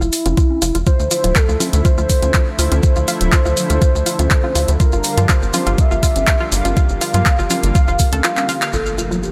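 Bathed in digital ambience, this hopeful, expansive progressive house passage sets a velvety, detuned synth lead with chorus and delay over a round analog pluck arpeggio that carries a filter sweep, a punchy, wave-folded sequencer bass, a lush, airy unison pad on sustained chords, an up-front knocking, overdriven electronic kick, a layered pop kit with handclaps and hi-hat, background congas and grainy maracas, all leading into a break and drum fill before an electronic impact lands at 8.7 seconds.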